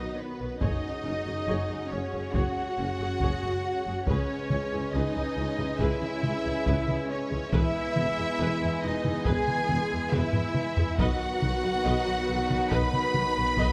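Bowed violins open the excerpt at once, carrying a smooth, vibrato-laden melody between B4 and B5 over a second violin line, distant violas, a lush string pad, mellow horns with soft attack, very quiet roomy trombones, and rich cello and double bass underneath. At 0.6 seconds a mellow solo tuba and a close, hard-stick taiko ensemble join, setting a relentless, heroic pulse for this cinematic, epic orchestral film cue in C# minor at 69 BPM in a straight 4/4. Trumpets in the background punctuate with stabs, while the harmony moves from B through F#sus2, C#m7 and E before returning to B at 11.0 seconds. The taiko drums stand out most, with a fill from 10.1 to 11.0 seconds driving toward that final chord. A light reverb gives the ensemble a sense of space, and the music continues past the cut.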